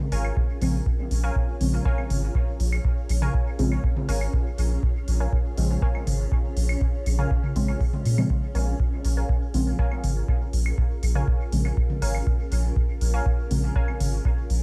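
A steady, straight 4/4 pulse at 121 BPM anchors this hypnotic, cavernous dub techno excerpt in Bb minor, resting on a single Bbm7 chord throughout. An up-front, tape-warm analog kick and a deep, round sub bass with sidechain pumping carry the low end, while smooth, layered electronic hi-hats sit quietly on top and electronic toms and claves, re-recorded in a small room, drift in the background through dub echo. A deep, mellow chord stab, dark and detuned with chorus and phaser, enters at 0.6 seconds and repeats through dub echo while a filter sweep moves across it. Above it, a warbly, dusty, lo-fi pluck plays a riff between Bb4 and Ab5, with chorus and echo giving it a wobbling, aged quality. A cloudy granular pad with a slow attack and long release holds sustained chords behind everything, blurred by its own reverb and a moving notch. The mix is dry apart from the pad's own reverb and leans heavily on echo, so repeats rather than room ambience create the sense of depth.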